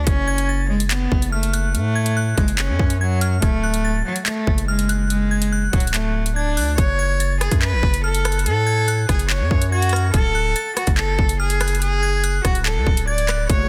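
Cold and dark, this drill excerpt at 143 BPM in a half-time feel sets a close, earthy bowed cello melody with light vibrato over a heavy, distorted 808-style bass and an up-front drum kit of hard-clipped kick, metallic hi-hats, handclaps and rim clicks, while a crystalline FM synth bell with chorus and tape echo traces a high second line through the F# minor to D changes. A distant, woody symphonic string section arrives only at 13.5 s, all in a dry, dense and heavily limited modern mix cut from a longer piece.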